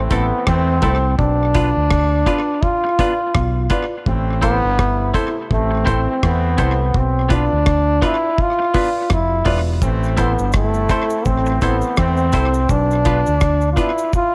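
Roots reggae in A minor at 83 BPM with a laid-back, serious mood, this short cut from a longer piece is led by a clear, scooped solo trombone with light vibrato and tape echo, backed by a tight trombone section playing a second line in the background. Up front, a round, punchy dub bass in the low register sits with a dry reggae drum kit of hi-hat, tight kick and rim click, also touched with tape echo. A bright, twangy, compressed electric guitar and boxy, woody upright piano stabs fill out the accompaniment, and a close cabasa slips in at 9.8 seconds, all set in light studio reverb.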